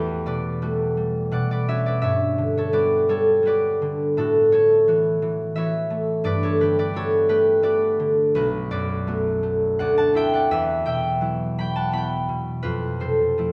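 A solo concert harp opens at once, its acoustic, ringing tone placed up front in a moderate recital hall reverb. This classical excerpt is gentle and wistful, moving in 3/4 at about 85 BPM with a rubato feel in E dorian. The fingerpicked harp spans a range from B1 to B5, carrying the whole excerpt alone from 0.0 to 13.5 seconds. Its harmony drifts through extended colours such as Em11, Gmaj7, A69 and D9 before reaching Emadd9 and turning to Fmaj7 near 12.7 seconds. The hall's 1.5-second decay lets each chord linger around the harp's warm voice.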